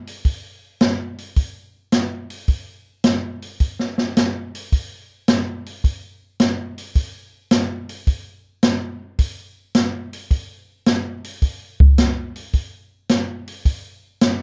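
Jazz drum excerpt with a soulful, bluesy mood, built on a swung eighth-note feel in 4/4. An open acoustic jazz kit carries the excerpt, entering at 0.1 seconds and playing through to 14.4 seconds. Hi-hat, kick drum and snare drum make up the kit, with a medium-tuned snare and a boomy kick. The drums sit up front and have a natural studio-room character. Light reverb and a dark, warm production shape the passage.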